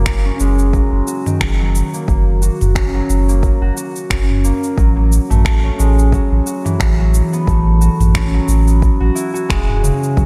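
Lightly reverberant, this earthy, peaceful organic downtempo excerpt at 89 BPM in 4/4 with a swung sixteenth feel places a warm, fingerpicked, ringing concert harp up front, playing arpeggios through a filter sweep and delay. Beneath it sit a round, sustained sine sub bass, also up front, pumping from sidechain, and an overdriven, produced afro-pop kit of cabasa, finger snaps and toms. A deep, overdriven electronic kick stays in the background, as the chords move from F#6 to A at 4.8 seconds.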